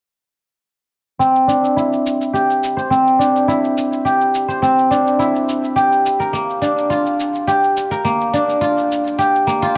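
Organic downtempo at 105 BPM in 4/4 with a straight feel, earthy and warm in mood, this excerpt comes from a longer piece. A fingerpicked acoustic guzheng carries the music in arpeggios, its silvery, ringing tone placed up front and shaded by a low-pass filter, a digital delay and a filter sweep that runs from 1.2 to 9.8 seconds. Beneath it, a compressed, sampler-style shaker supplies the drums with a gritty edge and a touch of studio ambience, sitting lower in the mix. The harmony moves from Cadd9 to Gm7 at 5.8 seconds. Light reverb and a dark production give the whole a dusky, grounded sound.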